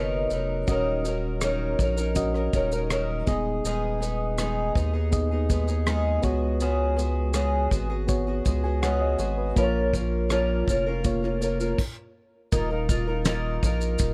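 A fingerpicked twelve-string acoustic guitar sits up front with a boxy, shimmering, octave-doubled tone and audible finger squeak, carrying this tender, reflective acoustic pop excerpt in Eb minor at 81 BPM, with a reedy, clean electric piano alongside it until 11.8 seconds. A deep, saturated sine sub bass with a fast attack underpins the sound from the start, and a soft brush kit with a fat snare, punchy kick, rim click, shaker and crash joins at 0.3 seconds, the drums dark and rolled-off in a small room. After a brief stop, the music settles onto Ebsus2 at 12.5 seconds, following a progression that moves through Ebm7, Abm/Eb, Db7sus4 and Bbm, all in a dry, close mix.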